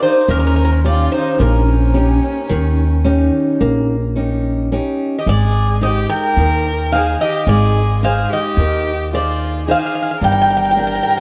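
Greek folk in a straight 9/8 metre, melancholic and dark in mood, this short passage is cut from a longer piece. A picked bouzouki carries the melody up front, its metallic double strings, some doubled at the octave, trailed by tape echo. Beneath it a single violin plays a second line with an airy, sul tasto bow and light vibrato, sounding intimate and boxy. An old ladder-braced acoustic guitar with aged strings picks a woody accompaniment, while a growly, thumpy pizzicato upright bass enters at 0.3 s and sits prominently in the mix. The harmony moves from Eb7 to Ab and settles on Gm at 10.2 s, all bathed in a moderate plate reverb that places the ensemble further back in the room.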